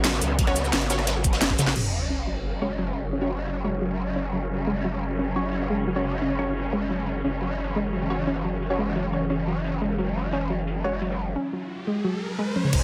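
A straight 4/4 pulse at 175 BPM drives this tense, futuristic slice of dark technical drum and bass, opening on a drop where an overdriven drum and bass kit with a cracking snare and bright hats sits up front beside a knocking electronic kick, while a gritty, saturated breakbeat kit runs in the background throughout. A growling, wobbling bass pushes forward with chorus, overdrive and sidechain pumping beneath lush, bowed symphonic strings holding dark sustained chords, and bold, detuned orchestra-hit-like stabs sit in the background with reverb and tape echo. From 1.8 s an impact lands, a mellow round pluck takes up arpeggios, and filter sweeps move across the strings, pluck and stabs, until a riser from 11.2 s brings the full kit back at 12.6 s and the kick at 12.7 s.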